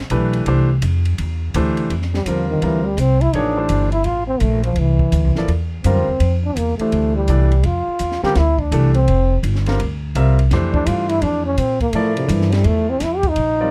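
Light reverb gives this swinging modal jazz fragment, cut from a longer piece, a spiritual, hypnotic air at 167 BPM in F major, with a woody, growly pizzicato upright bass up front and a clear concert grand piano comping over the shift from C69 to Fmaj9. A compact cocktail drum kit sits low in a small room, its dark cymbals, high-tuned snare and punchy kick softened by a rolled-off top. At 2.1 s a breathy trombone begins its solo, mellow and intimate with light vibrato, soft attacks and scooped notes, standing close to the listener until the end.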